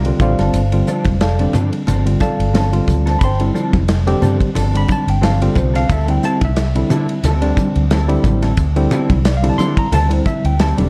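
This short excerpt of electric jazz fusion opens at once with fretless bass, drums and a mellow electric guitar, setting a driving, nocturnal groove at 89 BPM in 4/4 with a light swing on the sixteenths. The round, punchy fretless bass sits up front, while the modern studio kit sounds tight and smooth in a small room, its kick, snare, hi-hat and ride shaded with a rolled-off top. A worn, barky tine electric piano slips in as accompaniment; it is slightly out of tune, heard through its built-in speakers, and also placed up front. Congas with hard hands and thin, damped skins join at 0.2 seconds, bright yet vintage and tucked in the background. The clean, compressed guitar plays fingered stabs dressed in ensemble chorus, over D minor harmony that moves from G9sus4 to D9sus4 at 5.9 seconds. Light reverb and a warm, dusky production round out the sound.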